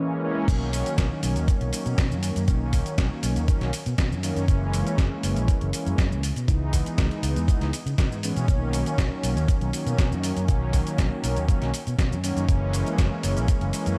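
A thumpy, up-front electronic kick drives this sunny, feel-good nu-disco excerpt at 120 BPM in B major, entering at 0.5 seconds alongside a gritty sampler-style soul kit of fat snare, hi-hat, shaker and crash bathed in studio reverb, and a round, punchy fingered electric bass with tube saturation, all beneath a mellow, brassy, detuned sawtooth synth brass that opens alone at 0.0 seconds and carries a filter sweep, chorus, sidechain pumping and analog delay over Bmaj7, F#7 and C#m7 chords.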